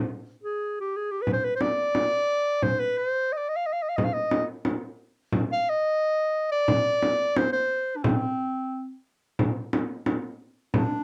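Arabic maqam ensemble music in C maqam nahawand, moving at 89 BPM in a straight 4/4 with a soulful, hypnotic mood. A warm clarinet carries the melody in a classical style, sitting up front as the solo voice and ranging from C4 to F5, its tone colored by a cassette tape character. It begins at 0.4 seconds, and a frame drum joins at 1.3 seconds, small and bright, played with soft hands in a live room and also placed up front. Light reverb surrounds the pair, and the home cassette recording gives the sound an intimate, homespun feel. This short passage is cut from a longer piece.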